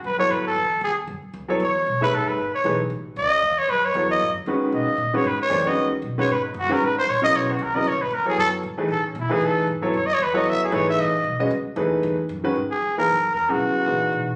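A bucket-muted trumpet leads this searching, spiritual modal jazz excerpt, its veiled, raspy tone growling and scooping into notes with light vibrato as it solos up front until 12.6 seconds. Beneath it, a grand piano with long sustain sits prominently alongside a woody, dark pizzicato upright bass, swinging briskly at 230 BPM in G# Phrygian over chords that alternate between F#m9 and G#m9. The sound, captured on a phone in the room, carries a moderate large-studio reverb.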